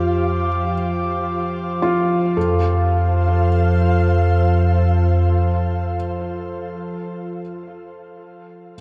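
A deep, ominous rumbling drone sits up front in this luminous ambient fragment, holding its bass note until 5.2 seconds beneath a pure, bright organ-like pad of sustained chords with ensemble chorus and shimmer reverb. A velvety synth lead with vibrato and tape echo sings a quiet melody in the background, while a felt-muted upright piano plays mellow arpeggios, its action noise audible, and carries on alone until 8.8 seconds. A glassy, beating glass harmonica adds texture through 2.4 seconds, all set in a dark production with a vast cathedral reverb.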